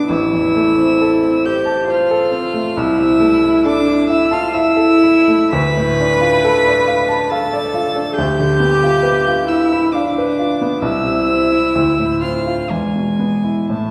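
An intimate, close-miked cello with light vibrato and an airy sul tasto bow carries the second line up front in this elegiac, solemn excerpt from a slow romantic piano trio movement in A minor, moving in a rubato 3/4 at 56-70 BPM, while a pure, floating violin sings the high melody with a soft attack, a warm, natural baby grand piano supplies the accompaniment, and a wet scoring-stage reverb places the room further back as the harmony moves from A minor through D minor to a closing E chord at 12.7 seconds.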